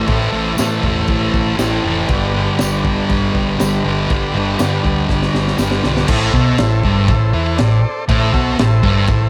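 A thick, double-tracked fuzz guitar riff sits up front over buzzy, heavily vibratoed combo organ chords in this swaggering, menacing garage rock excerpt at 120 BPM in A minor, joined by a round, punchy hollow-body bass and a gritty, saturated breakbeat drum kit with dark cymbals and a high-tuned snare, while a distant tambourine jingles in the background until 5.7 seconds and a drum fill from 5.1 seconds leads into a new section, all in a small room with light reverb.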